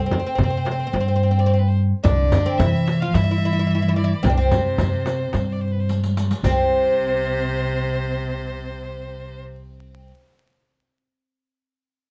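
A plucked, fretless oud, woody and up front with its doubled strings, carries the melody in this stately, passionate Arabic maqam ensemble passage in C maqam ajam at 109 BPM, over a growly pizzicato upright bass. A bright, biting violin and a rich, smooth cello, both bowed with vibrato and set at a distance, add second lines, the cello entering at 2.0 s with a softly struck riq. A deep, saturated frame drum and a crisp metal-shell darbuka drive the straight 4/4 until a drum fill at 5.9 s leads into a new section, where the percussion stops at 6.7 s, and light reverb, a dark production and vinyl crackle lend this cut from a longer piece an aged character.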